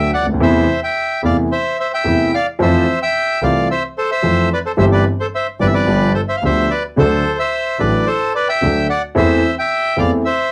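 This home recording on cassette has a moderate studio reverb, with the bandoneon itself carrying a cassette-tape grain. It is a dramatic, sultry tango, cut from a longer piece, moving at 110 BPM in 4/4 with a rubato feel. Up front, the reedy, bright and airy bandoneon carries the melody from A4 to G5 until 10.5 seconds. A concert grand piano, also up front, gives accompaniment with a rich low end, an open tone and long sustain. In the background, a single bowed double bass plays the bass line from G1 to F2, clear and intense with a smooth top and light vibrato, while the harmony passes through chords such as Amadd9/E, Fmaj7, G7 and D before settling on Am/E at 9.2 seconds.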